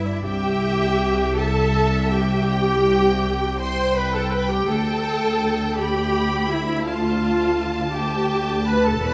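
Close, detailed microphones and a moderate scoring-stage reverb frame this serene excerpt from a slow, rubato romantic movement for string orchestra in 12/8: an up-front viola section with expressive portamento carries the accompaniment, a focused violin section sings the melody from 0.2 s alongside a second violin line, and lush cello and smooth double bass sections hold the low end as the harmony moves from C to G7/D at 4.7 s.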